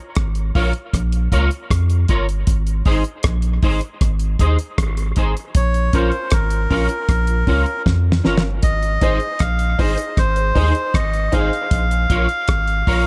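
A laid-back, hazy dub reggae groove in straight 4/4 rides on a dry, damped 70s drum kit with a fat snare and tight kick alongside a deep, round sub bass, while a clean, bright electric guitar with chorus and dub echo shimmers beneath, a reedy, breathy melodica takes the melody up front from 5.6 seconds, and a woody, slightly detuned upright piano adds echoing stabs until 11.5 seconds in this small-room cut from a longer piece, with a drum fill at 7.9 seconds and chords moving between Bbm and Ab.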